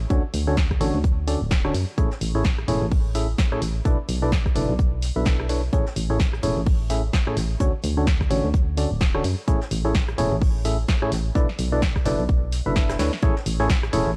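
An excerpt of euphoric, feel-good piano house in A major at 128 BPM with a swung 16th feel opens on a round, mellow FM bass with transformer saturation and sidechain pumping, joined at 0.1 seconds by a hollow, dark, chorused organ stab riff cycling through Dmaj7, Amaj7 and E7sus4, a tape-toned electronic kick up front and a faint high-pass-filtered brush kit in the background, with a punchy analog drum machine adding rim click, hi-hat and snare re-recorded in a large room from 0.3 seconds, all through gritty cassette-tinged digital ambience until a drum fill at 13.0 seconds.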